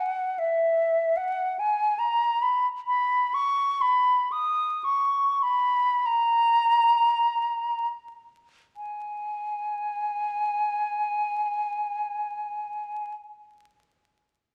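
A solo concert flute carries this short classical fragment, cut from a longer piece, playing alone from 0.0 to 13.1 seconds in a free, rubato 6/8 that feels yearning and meditative. Its tone is airy, with vibrato and tongued articulation, and the playing is expressive throughout, staying in a high register. The flute sits up front in the mix yet carries a distant quality, framed by a moderate recital hall reverb. The opening passage slows down from 0.4 to 8.8 seconds before a second section begins and runs to the end. A vinyl crackle lies under the whole recording, lending it an aged patina.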